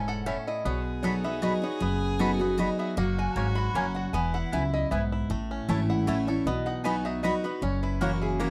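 A dry, close recording with a 1970s studio feel and only light reverb frames this short, rustic and lively bluegrass excerpt, moving at 155 BPM in 3/4 with a straight feel. A twangy, fingerpicked banjo and a nasal, metallic lap resonator guitar played with slide share the melody, the resonator sitting higher and slightly more present than the banjo. Up front, a bright, full-bodied dreadnought acoustic guitar carries the picked accompaniment, while a woody, thumpy pizzicato upright bass anchors the low end. A bright, double-strung mandolin adds stabs from 0.3 seconds, and a clear, earthy fiddle with light vibrato plays a distant second line until 5.1 seconds. The harmony moves through A, B, F#add9 and E before the second section at 5.3 seconds returns to A and B and closes on F#7.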